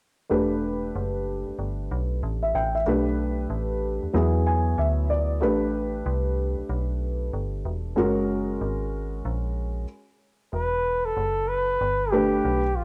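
A dark, woody upright piano, slightly detuned and close enough that its action noise is audible, opens this cool, nocturnal jazz-hop excerpt with cassette-worn chords and a fill at 4.1 s, over a metallic, digital FM bass with a fast, decaying attack. The swung groove rests in a moderate spring reverb with a homespun tape character. At 10.5 s a bucket-muted trumpet enters for a short, breathy, veiled solo with light vibrato and scooped notes.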